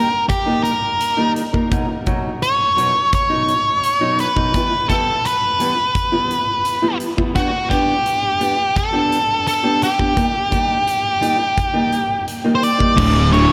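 A dark, octave-fuzzed lead guitar sits up front from the first moment, carrying a restless melody over the anthemic surge of this quiet-loud alternative rock excerpt at 85 BPM in a straight 4/4. Beneath it, a boxy parlour-style steel-string acoustic guitar is fingerpicked in arpeggios, moving through D#, B, Em and G before returning to D#. A huge arena drum kit joins at 0.3 seconds with bright crash and hi-hat and a punchy kick, set in a pumping hall that gives the whole track a big, lush arena sound with a moderate reverb tail. At 13.0 seconds the acoustic guitar drops out as a thick, double-tracked fuzz guitar riff and a bright, overdriven electric bass slam in on a D5 power chord, pushing the piece suddenly into its loud half just as the clip ends.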